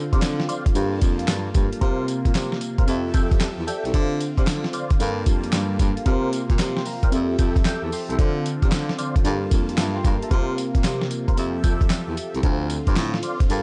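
New jack swing R&B with a slick, confident swing, built on a gritty, thumpy sampler-style drum kit of kick, snare, hi-hat, handclaps and tambourine up front, a breathy, whispered baritone saxophone carrying the bass line, a round, warbling FM electric piano with chorus, a swirling phased analog pad in the background, and percussive tonewheel organ stabs through slow rotary speaker and tape echo, all cycling through Dm7, Gm9, C7sus4 and Fmaj9 in a dark production from a longer piece.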